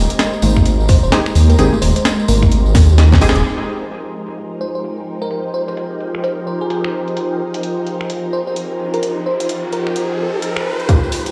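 A silky string machine, a deep, rumbling detuned saw bass and a cloudy granular pad open this late-night, skippy two-step UK garage excerpt in F minor at 129 BPM, their sustained sound pumping against the sidechain. A gritty, pitched-up breakbeat kit of congas, finger snaps, hi-hat and snare enters with a jingly tambourine, a tight electronic kick and punchy detuned chord stabs, while a sparkling, bell-like FM electric piano carries the melody through chorus, phaser and digital delay. The kick drops out during a drum fill, then the bass, stabs and tambourine fall away at 3.4 seconds as a filter sweeps the drums. An electronic riser builds from 8.5 seconds before the kick, stabs and tambourine return briefly at 10.9 seconds, the mix sitting in a lush hall reverb.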